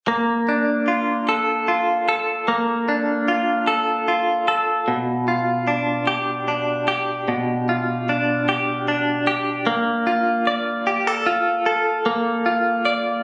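Captured on a phone in the room and bathed in a lingering echo-chamber reverb, this short pop excerpt features a lone clean electric guitar, picked and compressed, with a bright, twangy, scooped tone sitting up front and shimmering with tremolo. The swaying 6/8 lilt and romantic mood move from a Bbmaj7 to G7/B at 4.9 seconds, then return to Bbmaj7 as a new section begins at 9.7 seconds, running until the guitar stops at 13.2 seconds.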